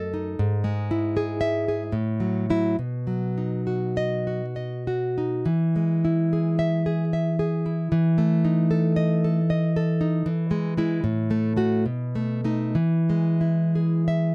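In 3/4 with rubato at a slow 61-80 BPM, this tender, romantic excerpt for solo classical guitar unfolds in E major. The fingerpicked nylon-string guitar sits up front, full-bodied and warm under close, detailed microphones with little reverb. It moves through E/G#, F#m7/A and B, rests on an Esus4 at 7.9 seconds, and closes its cadence through B7 to E at 12.8 seconds.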